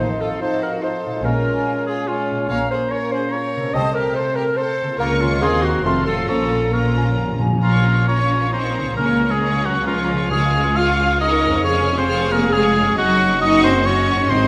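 This is a classical excerpt from a fast, dramatic romantic movement for symphony orchestra in Bb minor and 3/4, moving at 132-145 BPM with a dramatic, restless mood. A rich, lush violin section carries the melody high above the ensemble from 0.4 seconds, while a second violin section with a clear, intense tone and an up-front oboe add supporting lines. A mellow flute section, a soft-attacked clarinet and a clear bassoon in the background join the opening, alongside a French horn section holding sustained chords, and these winds and horns drop away by about 7.6 seconds. Underneath, a background viola section fills in the harmony, a concert harp rings out fingerpicked arpeggios, and focused cellos with soft-attacked double basses anchor the bass. Timpani struck with hard mallets punctuate the music, including a fill at 6.3 seconds that leads into the second half, where the harmony moves from Bb minor toward Db. 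The whole orchestra sits in a wet recital-hall reverb, and the violins have a distant quality.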